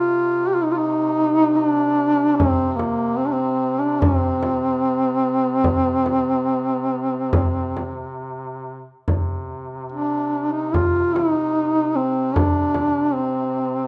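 Bathed in a moderate recital-hall reverb, this mournful, longing Caucasian folk lament unfolds in loose rubato as a mellow, up-front duduk sings a folk-style melody full of vibrato and scooped notes over a vintage-toned second duduk holding a low C3 drone, while a deep, close frame drum played with soft hands enters at 2.4 seconds and drops out at 12.9 seconds.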